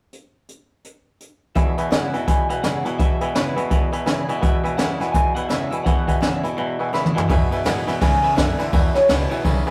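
A rowdy, retro rockabilly excerpt in E major at 167 BPM with a swung 4/4 feel opens on a jazz brush drum kit alone, sitting up front with dark cymbals, a high-tuned snare and a boomy kick played with brushes. At 1.6 seconds the band lands on an E chord: a twangy, scooped electric guitar plays a low riff, while a jangly, metallic tack piano and a full-bodied picked dreadnought acoustic guitar fill out the accompaniment. Over them, a slightly broken-up, lo-fi electric guitar through a small old amp carries the melody from the background, bathed in spring reverb. A drum fill at 6.9 seconds leads into the final stretch, where a woody, thumpy pizzicato upright bass with gut strings joins at 7.3 seconds. The whole take has the rough, saturated feel of a rehearsal-room recording in a modest reverberant space.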